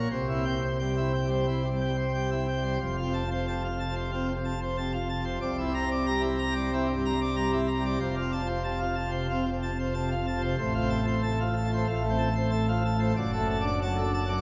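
A straight 4/4 pulse drives this majestic classical organ toccata, cut from a longer piece, where a solo pipe organ on full plenum with brilliant mixtures and baroque voicing spans F1 to Bb5 through chords moving from C to F, C9 and F/A before settling on D/F# at 13.2 seconds, all heard from further back in a church whose long, wet reverb of 3.3 seconds blooms around every chord.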